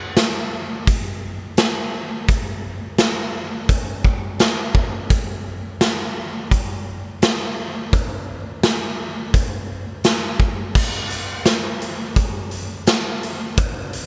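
A raw, gritty acoustic drum kit of kick, snare, hi-hat, crash cymbal and tambourine enters at 0.2 s and plays up front through a bright stone room that pumps, with a punchy kick, a medium-tuned snare and a rolled-off top, setting a blissful, floating dream pop groove at 85 BPM in a straight 4/4 that moves into a new section at 10.8 s in this brief cut from a longer piece.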